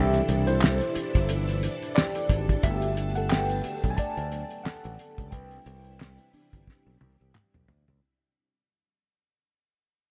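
A close, up-front studio sound with a touch of room ambience frames this smooth, lush 1970s-style soul excerpt, which fades out across its length at a relaxed 89 BPM in 4/4 with a gentle sixteenth-note swing. A worn, slightly out-of-tune tine electric piano takes the solo, its clean, direct tone colored by a phaser as it moves between Cmaj7 and Gmaj9 before returning to Cmaj7. Beneath it, a string machine holds sustained chords with a vintage sawtooth character, a soft attack, a long release and ensemble chorus, while a growly, punchy fingered electric bass anchors the low end. The cloth-damped, thuddy drum kit sounds dark and dry, with a fat snare, a tight kick and a rolled-off top on hi-hat and toms. Hollow group handclaps, close and dry, join at 0.6 seconds, and a drum fill arrives at 6.7 seconds.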